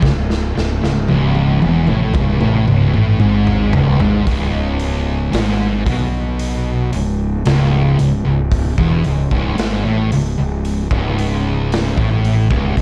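Brooding and heavy, this stoner and doom metal excerpt crawls at 56 BPM in C# minor, with a thick, double-tracked fuzz guitar riff sitting up front over a growly, overdriven fingered electric bass. A raw garage drum kit with a punchy kick, medium-tuned snare and rolled-off top plays throughout in a bright stone room, opening with a drum fill that runs to 4.3 seconds before the riff moves into a new section. Light reverb and a dark production give the whole heavy sound its weight.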